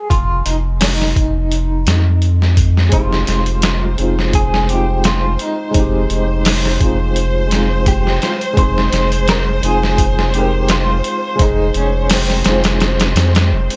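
A lightly swung 85 BPM trip hop beat in 4/4 sets a brooding, hypnotic mood in F minor, its muffled, pitched-down sampler drums with a thumpy kick and tape-warm tone sitting up front beside a deep, round analog bass. A slightly broken-up electric guitar carries the melody from the start through tremolo and dub echo, and at 2.9 seconds the harmony moves from F7(no3) to Fm7 as a soft, felt-muted upright piano joins with tremolo and 12-bit sampler grit, along with a rich bowed string section holding sustained chords. At 8.6 seconds the chord shifts to Ab/F, and the dry, close sound keeps every layer intimate in this short cut from a longer piece.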